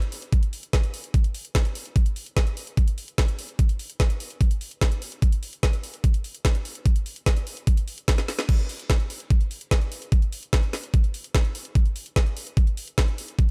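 Hypnotic and psychedelic, this trance passage at 147 BPM in a straight 4/4 is built entirely from drums: a layered, produced electronic kit with a woody snare, bright hi-hats and crash cymbal opens at 0.0 seconds, joined at 0.3 seconds by a knocking electronic kick that sits up front. Both parts are overdriven and dry, with little reverb around them. A short drum fill and a band accent lead into a drop at 8.5 seconds that carries through to the end of this section cut from a longer piece.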